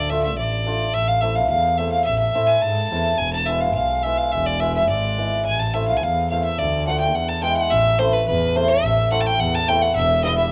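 Klezmer in a festive, soulful mood at 106 BPM in a straight 2/4, tuned to A4 = 444 Hz and cut from a longer piece, where an up-front bowed violin carries a biting, intense melody with light vibrato and cassette-tape colour, a shimmering, ringing hammered dulcimer with its own tape tint accompanies from 0.1 seconds, and a smooth, even bowed double bass with vibrato anchors the low end through chords moving from Dm to Am and E, all captured as a home cassette recording with light reverb and studio ambience.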